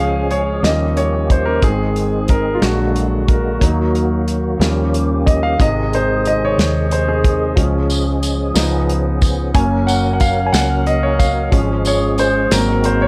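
A clear, intimate grand piano leads this slow gospel fragment, taking a solo across its full 13.1 seconds with its action noise audible up close. The feel is hopeful and soulful, moving in a 6/8 sway at 61 dotted-quarter beats per minute in Db major. The chords travel from Db through Eb7, Ab and a Bbaug7, touch Ebm, then return home through Db7 and Gb before settling on Ab7. Beneath the piano, a fat tonewheel organ holds sustained chords, lightly overdriven with chorus vibrato, key click and a slow rotary speaker. A round, punchy hollow-body bass sits up front with a dark, amped tone, while a small-room soul drum kit with a tight kick, medium-tuned snare, hi-hat and a rolled-off top keeps the pulse. A jingly, vintage tambourine joins at 7.9 seconds, all set in a light studio reverb.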